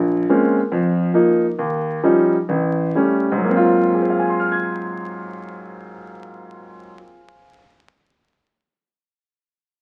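A warm concert grand piano, deep in the bass and up front with a natural tone, comps through a brassy, energetic swing jazz excerpt in Ab mixolydian at 122-143 BPM, easing its pace over the first 3.4 seconds as chords move from Bbm9 through F7sus4, Eb9 and A7 to an Ab13, all heard through a moderate studio reverb and the crackle of a very old 78 rpm record.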